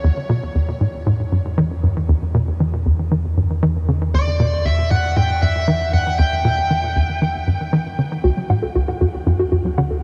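A huge, moderate ambient reverb with a long tail bathes this expansive, mysterious excerpt of sequencer-driven space music at 117 BPM in 4/4, where a tight, punchy, nasal sequencer bass riff with subtle chorus and delay drives up front over a deep, round sub bass on Em, a bright, smooth overdriven lead guitar sings a melody from 4.1 to 7.7 seconds through shimmer reverb and delay, and a warbly, dusty, detuned pluck enters with lo-fi arpeggios at 8.2 seconds as the chord shifts to D.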